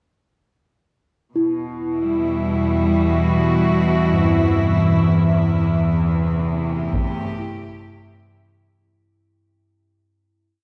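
Drenched in cathedral reverb with a long, dim tail and a softened top end, this short dark ambient drone in E minor moves at a slow 65 BPM in 4/4 and feels cavernous and unsettling. A studio cello section sits up front with warm, earthy bowed chords, light vibrato and a smooth top, holding Emadd9 from 1.4 seconds before shifting to Am7/E at 5.1 seconds. Beneath it, a deep, ominous drone rumbles with a slow attack and long release, carrying its own reverb. Two bronze singing bowls ring in the background with slow metallic beating: one, struck with a suede striker in a boxy small room, holds a high note that fades in, while the other, close-miked and dry, plays arpeggios as two slow loops of unequal length drift against each other. At 6.9 seconds a taiko ensemble adds distant, slow, heavy-stick hits, muffled by a low-pass filter, before the piece fades away.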